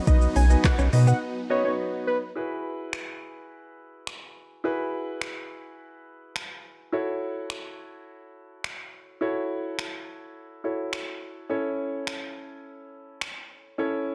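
A straight, upbeat dance-pop groove from a smooth R&B drum kit, with its soft kick, woody snare, silky hats, snaps, claps and shaker, drives this summery excerpt in a dark, ambient production, where a brief opening drop stacks huge, bright, phased supersaw chords, a fat, mellow detuned sawtooth lead with vibrato and digital delay, a deep, round sine sub bass and a clean, direct-recorded electric guitar riff with ensemble chorus in the background, the chords, lead and bass pumping under sidechain, while the clear, polished, sidechained baby grand piano plays from the start and carries on with the drums through the break at 1.2 s and beyond 2.4 s.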